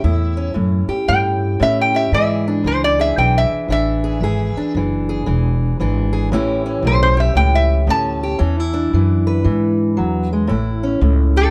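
Acoustic country blues with a rollicking, gritty mood, cut from a longer piece and moving at 115 BPM in 4/4 with a swung eighth-note feel over A7 and E7 chords. A metallic, nasal lap resonator guitar carries the melody up front, played with fingerpicks and slide, and takes a short solo with a steel bar from 10.5 seconds. A fingerpicked steel-string acoustic guitar with audible finger squeak supplies the accompaniment, while a woody, thumpy pizzicato upright bass anchors the bottom, all in light reverb.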